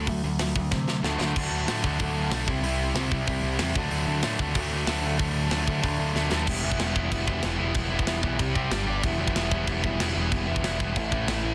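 A dense, heavily limited modern mix with light reverb carries this angry, urgent punk rock excerpt at 188 BPM, as a bright, compressed distorted electric guitar and a sludgy overdriven guitar in the background play picked riffs over a growling, overdriven picked bass and an up-front tight metal drum kit with bright cymbals and a softly clipped kick, with drum fills at 0.7 and 6.2 seconds pushing into an E minor stretch from 6.5 seconds.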